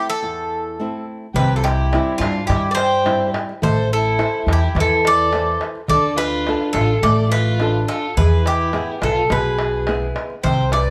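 A bouzouki and a flamenco guitar open this short cut from a longer Greek folk piece, the bouzouki carrying the melody up front with a warm, metallic ring from its picked double strings, some of them octave-doubled. Beneath it, the fingerpicked guitar supplies accompaniment on fresh strings, with the occasional finger squeak audible. At 1.3 seconds a pizzicato upright bass arrives with a woody, present tone, joined by a dark, bowed solo violin adding a second line with vibrato and smooth portamento slides. A small metal-shell darbuka comes in at 1.4 seconds, its crisp, high, vintage-sounding hits sitting lower in the mix. The band plays live together in a large studio with moderate reverb, giving the cool, bittersweet mood an open sense of space as the harmony moves from A minor through C, D minor and E.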